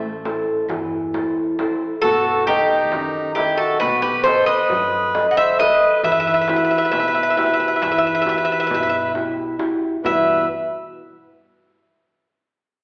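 This excerpt of dark, wistful Greek folk music opens with a warm, thumb-plucked nylon-string guitar up front and a woody pizzicato upright bass in the background. A deep clay-shell darbuka, played with hard hands, joins at 0.3 seconds, its vintage, band-limited tone sitting low in the mix. At 2.0 seconds a bright, metallic bouzouki takes the melody up front, its picked double strings partly octave-doubled, while a reedy single-reed accordion with dry tuning adds a clear second line. The music moves in 9/8 at 135 eighth-note beats per minute with a straight feel in E harmonic minor, its harmony passing from Am to B7 and settling on Emadd9. A wet recital-hall reverb surrounds the band, and the whole recording carries an AM-radio character.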